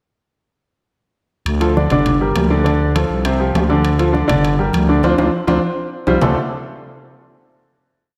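A clear concert grand piano anchors this short, fiery salsa piece in D minor at 202 BPM, playing a montuno in octaves with audible action noise and long sustain over a Dm, Gm, Dm7 and Csus4 vamp from 1.6 seconds. A growling FM bass plays a tumbao that anticipates the chords, ringing metal-shell timbales work the shell and bell, and thick-skinned congas add slaps and open strokes. The band hits an accent at 5.0 seconds before settling on a final Dm7 at 6.2 seconds, and the danceable groove sits in a dreamy mix soaked in lush hall reverb.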